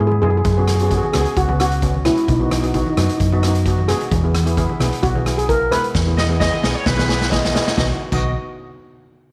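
A shimmering lead steel pan carries the melody in this carefree, festive calypso clip, its airy, metallic tone played with medium rubber sticks, while a lower cello pan fills in the accompaniment just beneath it. A round, dark hollow-body electric bass anchors the harmony as the chords move from F#sus4 through B and Emaj7 back to B. The street-band drum kit sits up front with a boomy kick, a medium-tuned snare, rim clicks, hi-hat and dark crash cymbals, and a drum fill runs from 5.9 to 7.8 seconds. Low-tuned, ringing congas play very quietly with a compressed, saturated edge. At 6.2 seconds a punchy horn section with light vibrato arrives to add a second line, all heard in light reverb and studio ambience in this piece cut from a longer performance.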